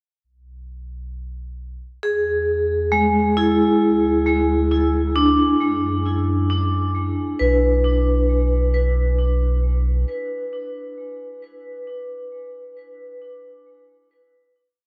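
Bathed in a vast cathedral reverb, this melancholic, serene ambient piece opens with a deep, round sub bass fading in from 0.2 seconds beneath a bright, metallic vibraphone played with hard mallets, whose tape-echoed arpeggios, shimmering with fast motor vibrato, unfold from 2.0 seconds in two slow loops of unequal length drifting against each other over E and E7/D chords before settling onto a final ringing note at 7.4 seconds.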